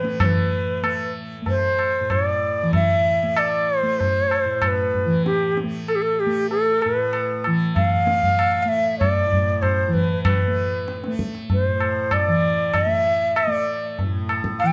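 Close, detailed microphones and a moderate recital-hall reverb frame this introspective, meditative Hindustani classical fragment in raga Darbari at 96 BPM in 4/4, where an airy, up-front bamboo bansuri with soft attack and vibrato carries the melody from G4 to G5 over a mellow, buzzing, shimmering tanpura drone and a low-tuned, ringing, compressed and saturated tabla, all three playing throughout its 14.7 seconds.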